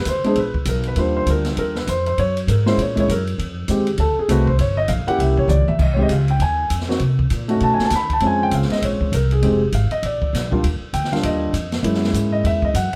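Heard from further back in a moderately reverberant studio room, this smoky, late-night swinging jazz piano trio passage features a dark, mellow grand piano soloing up front with audible action noise, a woody, growly pizzicato upright bass, and a natural-sounding drum kit with dusky cymbals and a boomy kick that plays a brief fill at 5.5 seconds.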